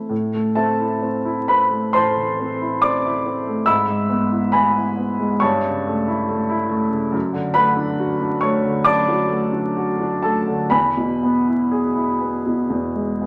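A baby grand piano sits up front in this short excerpt of a romantic classical nocturne, its tone warm and open, with long sustain letting each chord ring. The mood is yearning and mournful, and the playing follows a rubato feel with uneven beats in common time, so the pulse stretches and breathes. The piano plays alone for the full 13.3 seconds, ranging from E2 up to E6. The harmony moves from Am through E/G# and A7/G to D/F#, settling on E at 10.7 seconds with the phrase still unresolved, since the excerpt is cut from a longer piece. A large studio reverb surrounds the instrument with a spacious wet tail, and a layer of vinyl crackle lends the recording an aged, nostalgic surface.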